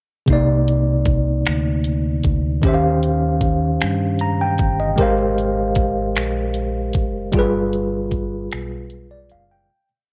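Late-night and sultry, this short, slow six-eight R&B piece sits in a dry, close home-cassette sound, with a mellow tine electric piano up front holding spread chords through Cm9, Eb13, Abmaj13 and G7b9, its worn, slightly out-of-tune tone lightly overdriven and dressed with grace notes and short fills. Beneath it a deep, round fingered electric bass plays a dark, sliding line with chromatic approach notes, while a produced electronic drum kit of knocking kick, warm hi-hat and finger snaps carries a tape-warm beat. The piece fades out from 7.3 seconds, breaking down at 8.5 seconds before the piano rings on alone to 9.9 seconds.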